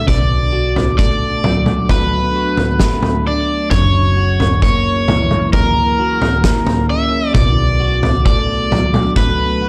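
Euphoric and cinematic, this slow 66 BPM post-rock excerpt in 4/4 moves from Bm7 to F#7 and back to Bm7, with a bright, overdriven cranked stack guitar melody up front with slapback echo over twangy, clean, compressed twelve-string electric guitar arpeggios (also with slapback echo), a round, amped hollow-body short-scale picked electric bass, a loose, roomy indie drum kit with a punchy kick, fat snare and toms, and a very quiet, ethereal, detuned pad, airy with phaser and ensemble chorus, entering at 0.2 seconds, all set in a dark production with light reverb and small room ambience.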